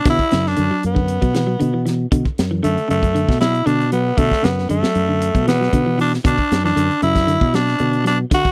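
Afrobeat at 116 BPM in B minor, intense and funky, resting on a Bm7 chord, with a raspy, gritty tenor saxophone carrying the melody up front with vibrato over clean, picked electric guitar arpeggios bathed in spring reverb in the background, a round fingered electric bass, and a tight funk drum kit with a high-tuned snare, captured in a dry, close 1970s-style studio recording cut from a longer piece.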